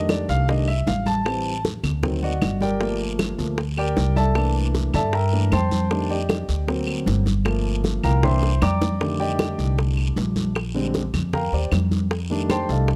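A concert grand piano and upright bass open this sunny, lively stretch of Afro-Cuban jazz at 155 BPM in 4/4 with a straight feel, centred on F mixolydian. The piano takes a solo across the whole 13 seconds, up front with an intimate, natural tone, deep bass, long sustain and audible action noise, ranging from D3 to D6 over colourful harmony such as F13, D7b9, C13 and Bb13. The pizzicato upright bass sits just as close, woody and warm with the bite of steel strings. From 0.1 seconds the percussion fills in: tight, high-tuned bongos played with soft hands, bright thin-skinned congas in the background with a live-room feel, woody claves further back, and a raspy guiro heard close. A drum fill between 8.4 and 9.0 seconds leads into a return of the opening material. The overall sound is a dry, close studio recording in a 1970s style, cut from a longer piece.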